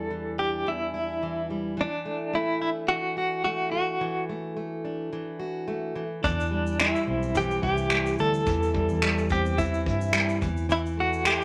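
Moderate studio reverb gives this reflective, tender acoustic pop piece an intimate, close-up sound, with a gentle swing in 4/4. A clean, compressed electric guitar recorded direct carries the melody with tremolo over a warm, fingerpicked plugged-in steel-string acoustic guitar, both up front, as the chords move from Em7 through D/E to C and Am. At 6.2 s a round, foam-muted vintage bass joins alongside a small-room vintage brush kit with a tight kick, finger snaps, shaker and a rolled-off top.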